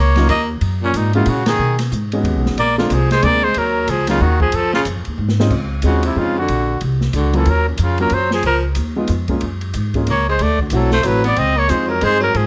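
A swinging 3/4 pulse at 184 BPM drives this short, relaxed cut of small-group swing and bop, sophisticated in mood and settling into D-flat major at 5.5 s. A mellow, up-front trumpet carries the melody with light vibrato, scooped notes and a smooth top, while a raspy, growling baritone saxophone adds a gritty second line. The woody pizzicato upright bass sits up front. A concert grand piano with deep bass and a natural tone supplies the chords. An acoustic jazz kit in a small room, with dark cymbals, a medium-tuned snare and a boomy kick, plays ride, hi-hat, crash, snare and kick more softly under the band. The group hits an accent at 1.4 s, and a drum fill at 5.2 s leads into the second section, where chords such as Dbmaj7, Ebm9 and D9 pass under light reverb.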